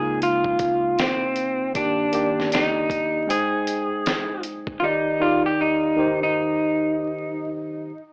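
Mellow and dreamy, this short lo-fi hip hop fragment, cut from a longer piece, drifts along at 78 BPM in 4/4 with a swung sixteenth-note feel in Eb major. An electric guitar through a small old amp carries the melody up front, its dark, slightly broken-up, fingered tone colored by vibrato and analog delay. A worn, slightly out-of-tune tine electric piano sits close and direct beside it, its cassette-tape sheen supporting chords that move from Db69 through Ebmaj7 and Abmaj7 before settling on Eb6. A round, amped fretless bass sounds only briefly in the background at the very start, stopping by 0.9 seconds. A gritty, compressed sampler-style drum kit with a thumpy kick, fat snare and hi-hat enters at 0.2 seconds and drops out at 4.8 seconds, its sound re-recorded in a large room. Vinyl crackle, an AM-radio filter and a moderate small-room reverb give the whole fragment its hazy, faded character.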